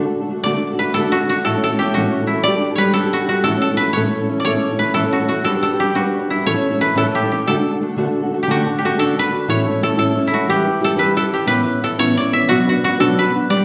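Celtic folk in a rollicking, cheerful 6/8, with a woody koto played with fingerpicks carrying the melody dry and up front over a dark, fingerpicked steel-string acoustic guitar accompaniment set in the wet reverb of a recital hall, as the piece moves into a new section at 8.5 seconds within this short cut from a longer piece.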